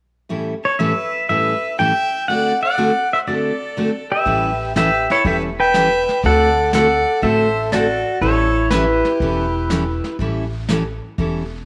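A picked steel-string acoustic guitar opens this short, playful western swing excerpt at 0.3 s, its fresh-stringed dreadnought tone sitting up front as it lays down a swung 121 BPM accompaniment in A mixolydian. Almost at once a pedal steel guitar takes the melody, clean and compressed under fingerpicks, its slide and volume swells giving the down-home tune a glowing, singing voice, while a single bowed fiddle adds a clear second line with light vibrato and an intense but smooth top. At 4.3 s an upright bass and a vintage brush drum kit join in: the pizzicato bass is woody and thumpy, and the kit's brushes, medium-tuned snare, hi-hat and punchy kick carry a dark, rolled-off small-room sound. The harmony moves between A9, D7 and D9 chords, and a moderate plate reverb lends the ensemble a gentle shine. The fiddle and steel stop at 10.2 s, leaving the guitar, bass and drums to carry the final moments.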